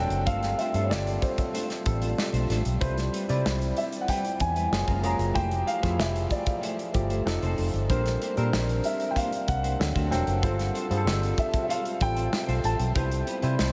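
Polished 1980s jazz-funk pop at 95 BPM in a straight 4/4 with an upbeat, urban mood, this short cut sets a dark, boxy grand piano melody with diffuse ambient delay over a barky, lightly overdriven tine electric piano with lush chorus, a clean picked guitar riff with ensemble chorus in the background, a round, foam-muted fingered bass up front, and an airy studio drum kit of tight kick, medium-tuned snare and hi-hat entering at 0.1 seconds, all soaked in a huge, dreamy reverb as the harmony moves from G9sus4 through Cmaj7, F#maj9, Fmaj9, Bb69 and D7.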